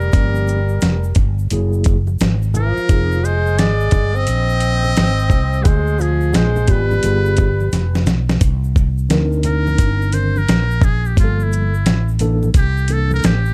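A dark, warm production in a small room sets a mellow, cool jazz-hop groove at 87 BPM in C minor, swung on the sixteenths and cut from a longer piece, with a gritty, compressed sampler-style drum kit up front, thumpy kick and fat snare, beside a round, amped fretless bass. A buzzy, thin trumpet with metal mute carries the melody with light vibrato and scooped notes, while a breathy, whispered tenor saxophone with slapback echo sits distant beneath it until 8.1 seconds, over a clean tine electric piano, ringing conga and egg shaker tucked in the background. After a drum fill at 7.7 seconds, the muted trumpet takes a solo from 8.4 seconds as the chords move from Cm9 through Gm9 to C13.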